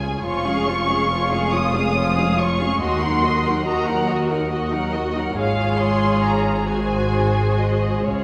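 A muted violin section carries the melody up front, its con sordino tone veiled and lush with a soft attack and vibrato. This is a slow, romantic classical movement for string orchestra in 6/8 with a rubato feel, and the mood is tender and warm. A second muted violin line sits just beneath the melody, while the violas supply a smooth-topped accompaniment. Cellos, placed in the background, and double basses share the bass, both bowed with a close, dark sound. The whole section plays together throughout this 8.2-second fragment of a longer piece, moving from Db/F through Ebm and Db/Ab to an Ab7 at 6.7 seconds. A wet reverb with a 2.0-second decay surrounds the ensemble, giving it the bloom of a church or concert hall.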